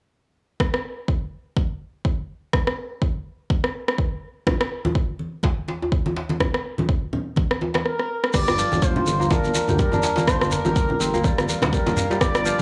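A dry, gritty hardware sound with light studio reverb frames this driving afro house cut, taken from a longer piece, at 124 BPM in G minor with a swung sixteenth-note feel. It opens at 0.6 seconds on an up-front afro-pop drum kit of crash cymbal, rim click and toms, layered over a deep, overdriven electronic kick, and warm, hard-handed congas and a medium-tuned djembe join at 4.5 seconds with a small-room acoustic character. A drum fill leads into the second section at 8.3 seconds, where the harmony settles on Gm7 and a dark detuned saw bass enters, rumbling and beating low in the register with sidechain pumping. There a bright, fingerpicked kora plays ringing arpeggios through sidechain pumping, tape echo and a low-pass filter sweep, while a grainy shekere sits close underneath. Above them, a smooth, nasal synth lead that arrived just before the fill carries an expressive melody with vibrato, lush chorus and tape echo.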